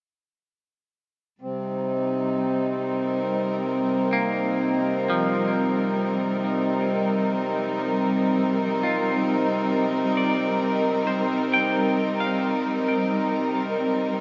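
This ambient excerpt opens onto a vast, reverberant space with a dark top end, its long decay letting every note hang in the air. A small chamber string section carries sustained chords from 1.4 seconds, sitting up front with a soft attack, light vibrato and the hushed, intimate tone of bowing over the fingerboard. Beneath it, a hand-pumped harmonium holds a reedy, breathing drone with a mellow, vintage character. At 4.1 seconds a clean electric guitar enters with picked arpeggios, its bright tone shimmering through harmonic tremolo and delay. Resting on a Cm7 chord in C minor at a slow 67 BPM, the piece feels spacious and reflective, with the guitar and harmonium fading out across its length.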